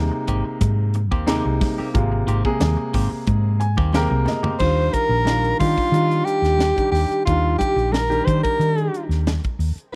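A breathy soprano saxophone, placed up front with vibrato, scooped notes and a subtone edge, carries the melody in this slick, funky cut of electric jazz fusion, entering at 4.6 seconds as the harmony moves from Abmaj9 to Ebmaj9. A very quiet concert flute, pure and hollow with a mellow metal tone, plays a second line in the same register. Underneath, a dark, round hollow-body electric bass sits prominently, while a vintage, smooth grand piano supplies warm accompaniment and plays a fill from 3.3 seconds, shortly before the drums add a fill of their own. The crisp kit is polished and airy, with a high-tuned snare, a tight kick, hi-hat, toms and crash, and soft-handed congas ring in the background. In the opening bars a clean, twangy electric guitar adds bright, compressed stabs with a subtle chorus, and the dry, close production gives the piece a 1970s studio feel.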